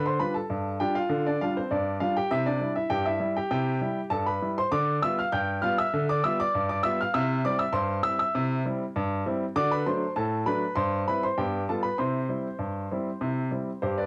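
A cassette-taped home recording with moderate studio reverb frames this jaunty, playful ragtime excerpt at 99 BPM in straight 2/4 and C major, tuned to A4 = 439 Hz, where a solo grand piano sits up front with a clear, intimate and natural tone, its action noise audible as it moves between G7 and C before a brief turn through D7 and C/G that settles back on C at 12.0 seconds.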